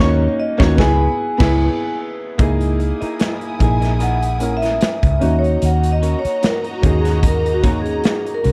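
A band accent opens this cinematic, bittersweet snippet of lush 1970s-style soul. Ringing, metallic vibraphone carries the melody over a smooth vintage grand piano, a bowed symphonic violin section with vibrato, a slightly broken-up, lo-fi picked electric guitar riff with spring reverb in the background, and a dark, round, foam-muted bass, before a modern studio drum kit with a punchy kick enters at 0.6 seconds and the vibraphone takes a solo from 2.4 seconds in a dry mix.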